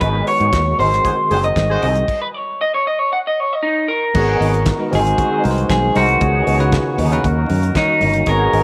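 Disco in G# minor at 116 BPM, danceable and glamorous, with a twangy, slightly broken-up lead guitar up front that plays a clean solo over G#m7 and G#7 into a stop from 2.1 to 4.1 seconds. Throughout, a bell-like tine electric piano, a dark wah-and-tremolo guitar, a very quiet lightly overdriven tonewheel organ with slow rotary, a round fingered bass, a dry 70s drum kit with a fat snare and tight kick, and very quiet congas carry the groove, joined by clear vintage horn stabs from about 1 second, moving on through C#9sus4 to D#m7 in a moderate echo-chamber reverb.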